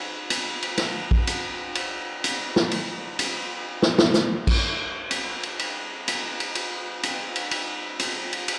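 A swinging big-band drum kit carries this short jazz fragment, entering at 0.3 seconds and playing through to the end at 8.6 seconds. The tempo sits at 125 BPM in 4/4, with a firm swing on the eighth notes that gives the energetic, brassy mood its drive. The kit is acoustic and natural, heard up front in a big room: a punchy kick, a medium-tuned snare, hi-hat, ride and crash cymbals all sound clearly. A drum fill breaks the groove between 3.7 and 4.1 seconds before the time resumes. The whole recording carries a light reverb and the worn character of old cassette tape, with a warbly pitch drift that lends it an aged, wavering patina. It is cut from a longer piece.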